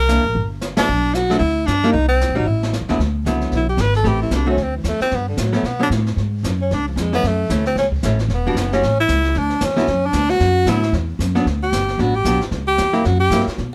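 Small-group swing jazz with a bop edge, this brief, swinging clip from a longer piece opens with a band accent at 0.7 seconds before the clear, close-miked tenor saxophone takes a solo from 3.0 seconds, its soft attack, vibrato and scooped notes sitting up front. A woody, growly pizzicato upright bass carries the low end just as prominently, while a dark, clean, compressed hollow-body archtop guitar supplies picked accompaniment. Further back, a distant, roomy brush kit with dark cymbals and a boomy kick adds a warm, rolled-off backdrop, all set in light reverb.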